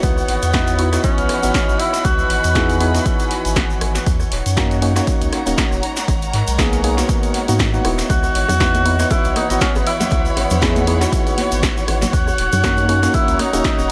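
Opening on a distant, lightly vibratoed tenor saxophone phrase over a deep house groove at 119 BPM in C# dorian, this moody, swung excerpt from a longer piece pairs a punchy layered kick and tape-tinged analog drum machine hi-hat, rim click and snare with a grainy egg shaker, a round sine sub bass, and hollow organ stabs carrying chorus and dub echo. Alongside them sit a soft, flute-like pad and a dark, bowed string section with expressive portamento, both pumping against the kick, while chords move through C#m11, D#m7 and G#m9. The saxophone stops at 3.1 seconds and returns at 8.1 seconds, when bright, close bongos and congas join in the background of a dry, echo-heavy mix.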